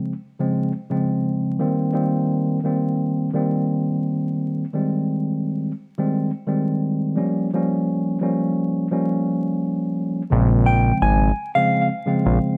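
A mellow tine electric piano opens this dark, moody boom-bap hip-hop excerpt at 86 BPM with a 16th-note swing, its clean tone coloured by cassette tape and filtering as it moves through jazzy Bb dorian chords from Dbmaj7 toward Bbm6/F, all over a bed of vinyl crackle and light reverb. At 10.3 seconds a fat, detuned sawtooth analog bass enters up front with a fast attack and decaying notes, landing on Bbm7. Moments later, at 10.7 seconds, a brief, dark fingered electric guitar line appears high in its register, softened by filtering, plate reverb and tape echo.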